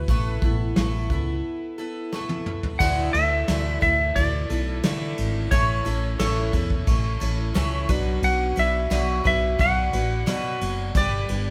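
Nostalgic and warm, this folk rock and heartland rock excerpt puts a twangy, clean lap steel guitar on the melody over a shimmering, octave-doubled twelve-string acoustic guitar, picked with audible finger squeak. A growly, round fretless electric bass sits up front, while a dark, smooth brush drum kit with a punchy kick plays a fill from 2.1 to 2.8 seconds to close a short break, and then the chords move from Dsus2 through A and Bm to G. The band plays live together in a stone room with moderate reverb.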